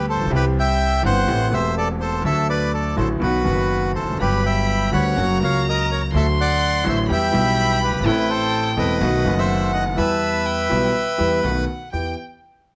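Passionate and dramatic, this excerpt of a rubato tango in E minor at 124 BPM sets a reedy, up-front bandoneon melody with plate reverb over a clear grand piano with audible action noise and long sustain, and a woody, thumpy pizzicato upright bass on gut strings, while a bowed violin enters at 4.2 seconds with a soft-attacked, expressive second line full of vibrato and portamento, all in a moderate studio room.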